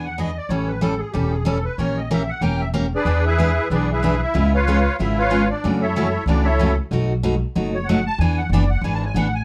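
A swinging 4/4 pulse at 187 BPM drives this lively excerpt of acoustic string swing in E mixolydian, with a woody, thumpy pizzicato upright bass on gut strings anchoring a bright, full-bodied jumbo steel-string guitar that picks the accompaniment up front. A reedy musette accordion, shimmering in its musette tuning and mid-forward in the mix, solos from 0.0 to 9.4 seconds over changes that run from E7 through A7, A#dim7, C#7, F#m7 and B7 before returning to E7. The dark production sits in a moderate studio reverb.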